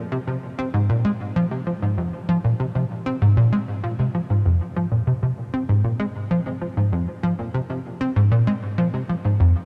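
A punchy, up-front analog bass with a sawtooth filter pluck plays alone from 0.0 to 9.5 s, ranging from F2 to C4 with subtle chorus and tape echo, its fast-attack notes decaying into a huge ambient reverb in this cosmic, mysterious ambient fragment in F minor at a steady 97 BPM in 4/4, with a new section arriving at 4.5 s.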